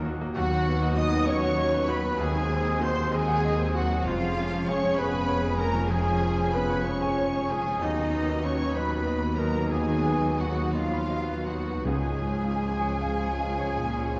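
Lyrical and lush, this romantic movement for piano and orchestra unfolds in a rubato 12/8, with a clear baby grand piano carrying the melody, its action noise audible, while a violin section sings high above it with smooth vibrato. A second violin section, a distant clarinet and an airy flute ensemble weave a second line, and a trumpet section adds smooth-topped stabs. Violas and cellos fill the background with lush bowing, a bright double bass section anchors the low end, very quiet mellow French horns and trombones hold sustained chords, and round, softly struck timpani enter briefly at 11.8 seconds, the whole sitting in a wet concert hall with a dark production.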